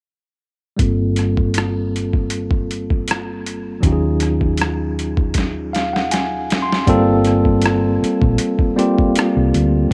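At 0.8 seconds, a tine electric piano, a boom bap drum kit and a bass come in together. They set up a late-night, sultry neo-soul and R&B groove at 79 BPM in a straight 4/4, in G minor. The clean electric piano sits up front, heard through its built-in speakers, with a low-pass filter sweep shaping its Gm11 and Ebm11 chords. Beneath it, a hollow-body short-scale electric bass is played with the fingers, its amped tone dark, round and punchy. The sampler-style kit is pitched down, compressed and gritty with overdrive, re-recorded in a small room and placed up front, with a thumpy kick, a medium-tuned snare, rim clicks and hi-hat. From 5.3 seconds, the drums and electric piano both play fills, leading back to Gm11 at 6.9 seconds in a dry mix cut from a longer piece.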